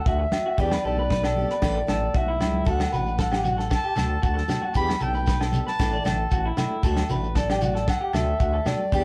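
A breathy, close-miked clarinet carries the melody in this carefree, joyful highlife guitar band excerpt, its subtone whispered and intimate, with vibrato and scooped notes in a jazz style. Beneath it, an electric guitar through a small old amp plays twangy, slightly broken-up arpeggios, while a fingerpicked steel-string acoustic guitar sits in the background with bright fresh strings and audible finger squeak. A growling FM bass and an up-front soul drum kit, dark and rolled-off on top with a tight kick and medium-tuned snare, drive the straight 115 BPM groove in D major, with a drum fill from 2.0 to 2.7 seconds. Vintage, band-limited percussion fills out the pulse: ringing agogo bells and soft-handed, high-tuned congas in the background, joined at 2.7 seconds by a grainy shekere. The chords cycle through D, Em7 and Asus4, and the band sounds as though it is playing live together in a small room with moderate reverb.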